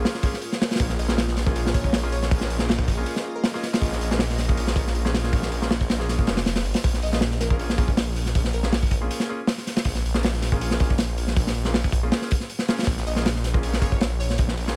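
Drum and bass with a jungle edge, this raw, nostalgic passage is cut from a longer piece and sits on a single minor-seventh chord. A crunchy breakbeat kit drives it from the start, its saturated, gritty hits pushed up front with a punchy kick, a medium-tuned snare and hi-hat, all softened by a dark, rolled-off top. Beneath, a thick, detuned saw bass growls low and menacing, its beating tone thickened by tube saturation. A clear concert grand piano stabs chords through the whole passage, trailed by dub echo, while a cloudy, evolving granular pad hovers very quietly until it drops away at 6.8 seconds. A catchy, plucky unison lead with vibrato, subtle chorus and dub echo drifts in from the background in short phrases, first at 1.0, again at 7.0 and once more at 13.1 seconds, all inside a small room ambience.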